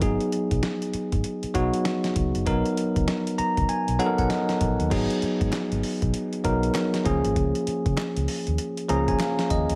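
A swung 98 BPM new jack swing groove in 4/4 drives this confident, slick R&B excerpt in G# dorian, where a gritty, compressed sampler-style drum kit with thumpy kick and crash plays alongside a punchy, foam-muted fingered electric bass, a bell-like tine electric piano plays up front with fills from 3.1 and 8.6 seconds over G#m7, Bmaj7 and C#6 chords, crisp group handclaps enter very quietly at 5.5 seconds, and a moderate echo chamber reverb fills the room.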